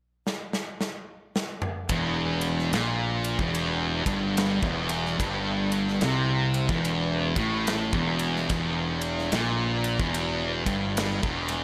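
The recording sits in a studio reverb with a faint mains hum underneath, and it is cut from a longer piece of hypnotic, brooding stoner and doom metal with a slow, swung eighth-note feel. An acoustic rock drum kit opens with a fill at 0.3 seconds, its big room sound carrying bright cymbals, a medium-tuned snare, toms, a ride and a punchy kick. At 1.9 seconds the full band lands on an E minor chord as two thick, distorted fuzz guitars enter with a low, picked riff, one set up front and the other tucked into the background. A fingered electric bass joins them at the same moment, overdriven and tube-saturated into a growly, direct-and-amped tone that rounds out the heavy low end. The guitars, bass and drums then continue together to the end of the excerpt.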